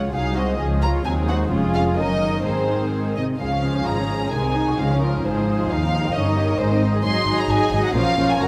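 A quick classical-period movement for string orchestra, cut from a longer piece, carries a stormy, restless mood in a straight 2/4 pulse. A violin section carries the melody from 0.1 s, floating and pure with a soft attack, while a second violin section plays a supporting line beneath it, both bowed sul tasto. A dark, woody viola section fills in the accompaniment with vibrato and a lush ensemble body. In the bass, an intimate cello section sits close but in the background, joined by a double bass section reaching down to F1. The harmony moves through dominant-seventh chords and inversions, shifting from the first section to a second one at 3.4 s and settling on a minor chord near the close, all set in a wet concert hall reverb.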